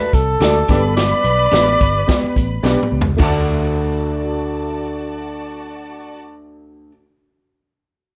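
Passionate and urgent, this brief uptempo 1960s-style soul cut at 108 BPM opens with a breathy, whispered tenor saxophone carrying the melody until 2.6 s over a lush bowed violin section, a woody, slightly detuned upright piano in the background, a dark foam-muted electric bass, slightly broken-up guitar stabs soaked in spring reverb, and a punchy, up-front big-band drum kit whose fill at 2.6 s leads into a new section at 3.2 s, all set in a moderate club reverb.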